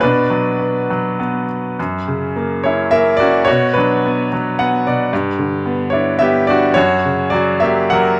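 A brilliant, up-front baby grand piano opens this cool, moody excerpt of lyrical classical solo playing in a rubato three-four, its long sustain and audible action noise caught by close, detailed microphones with light reverb, as a grand piano fill arrives at 4.3 seconds before the passage breaks off at 8.2 seconds.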